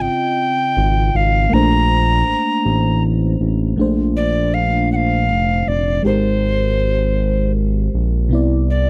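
Tender and warm, this slow six-eight R&B excerpt sets a breathy, reedy alto recorder melody with woody chiff over a soft, round FM electric piano with chorus and a smooth, sustained synth bass, all captured in a dry, close 1970s-style studio sound as the major-ninth chords shift from Dbmaj9 through Bbmaj9 and Abmaj9 to Cmaj9.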